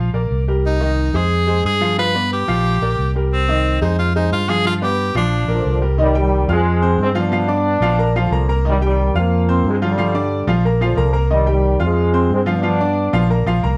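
An edgy tenor saxophone with light vibrato carries the melody in this passionate, driving Latin excerpt at 180 BPM in C minor, handing the line to a mellow, punchy trombone section bathed in plate reverb from 5.5 seconds. Beneath them a bright, woody upright piano accompanies throughout while a dark, round fingered electric bass anchors the low end. The chords cycle through Bb, Cm7, Fm and G7 in a moderate studio room heard from further back.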